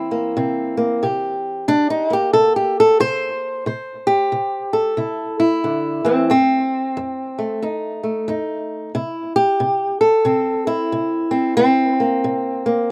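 A fingerpicked old ladder-braced acoustic guitar, dark, woody and boxy with the dull bite of old strings, plays alone and up front through a short slapback echo from the first second, setting a laid-back, gritty acoustic country blues in C mixolydian at 91 BPM with a swung feel, moving through C7, C, F7 and back to C7 across a dry outdoor sound in this 12.9-second cut from a longer piece.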